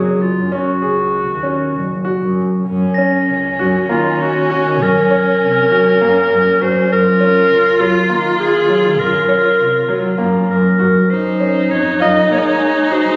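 A clear, punchy clarinet leads this shimmering, restless excerpt of contemporary chamber music in 7/8 at 199 BPM (eighths) in Gb lydian, its forceful, vintage, jazz-style solo with light vibrato sitting up front over a brilliant concert grand piano's arpeggios and a close, bowed double bass with portamento and expressive vibrato. From 2.7 s a focused, distant bowed viola adds a second line as the harmony moves from Gbsus2 to Gbmaj7, and at 2.9 s a bell-like glockenspiel played with soft plastic mallets rings in the background until 9.8 s, before the chords arrive on Bbm. The sound carries a moderate scoring-stage reverb and was captured on a phone in a room with club reverb.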